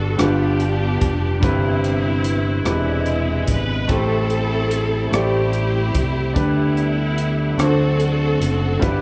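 Reverent and uplifting, this slow gospel passage in 6/8 features a lush, vibrato-rich string section carrying the melody with a slapback echo over a clear concert grand piano, a very quiet, mellow French horn section holding sustained chords, a punchy fingered electric bass up front, and an airy drum kit of hi-hat, kick drum and rim click that enters at 0.2 s, all moving from G7 through to D7 in a small, lightly reverberant room.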